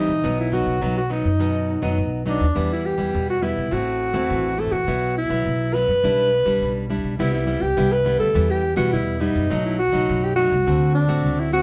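Samba and choro in E minor at 104 BPM with a festive, playful mood, this excerpt features a breathy, whispered alto saxophone melody with vibrato and scooped notes up front, over fingerpicked, full-bodied nylon-string guitar with audible finger squeak and woody pizzicato upright bass, all set in a wet studio reverb heard from further back in the room as the chords move from Em through Am, Bsus4 and Cmaj7 to B7 and D7.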